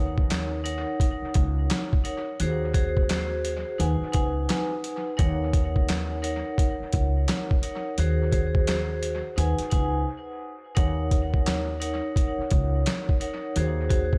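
Tough yet reflective, this swung boom-bap hip-hop excerpt opens on a bright, ringing vibraphone struck with hard mallets, its slow motor vibrato filtered and trailed by dub echo, while a woody, growly pizzicato upright bass moves through minor-seventh and suspended chords beneath it. From 0.2 seconds a gritty, pitched-down sampler-style drum kit joins up front with a thumpy kick, medium-tuned snare, hi-hat and handclaps, compressed and re-recorded in a large room. A brief break arrives at 10.1 seconds, and the whole sits in a small room within an echo-heavy mix.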